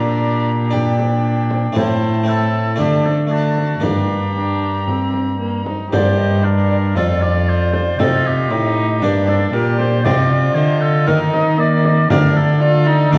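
A reedy, up-front cello with gut-string tone anchors this rustic, solemn renaissance-style consort dance in G minor at 116 BPM, bowed beneath a distant oboe melody with light vibrato and an airy tenor recorder second line with a crisp, chiffy attack. A bright, plucked harpsichord and a rich viola played by a single player fill out the accompaniment, while a deep frame drum sits in the background from 0.7 s. The short excerpt is bathed in wet recital hall reverb and colored by worn cassette tape with warbly pitch drift.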